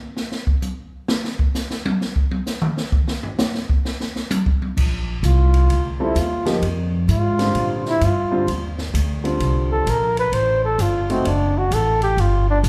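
Small-group swing and bop jazz with a sophisticated, playful mood, cut from a longer piece, opens with a solo on an open drum kit with dark cymbals and a boomy kick until a woody, growly upright bass enters at 4.8 seconds, soon joined by a mellow flugelhorn melody with light vibrato and scooped notes and an intimate grand piano accompaniment with audible action noise, the group heard from further back in a large studio room.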